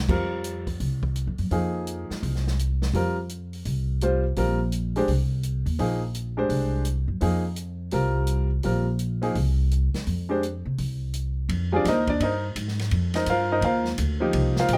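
Modal jazz in F dorian, this short passage cut from a longer piece moves at a brisk 168 BPM in 4/4 with a swung eighth-note feel, its mood searching and cool. The upright bass opens at 0.0 seconds, plucked and woody with steel strings, sitting up front in the low register. A bright upright piano joins almost immediately as accompaniment, its brilliant, intimate tone carrying audible action noise and ranging from F3 to G5. An open jazz drum kit sits further back in a small, natural room, with dark cymbals across ride, crash and hi-hat, a medium-tuned snare and a boomy kick. The harmony opens on an F9sus4 chord, and the music shifts into a new section at 11.5 seconds. Close, detailed microphones and light reverb give the sound a clear, present character.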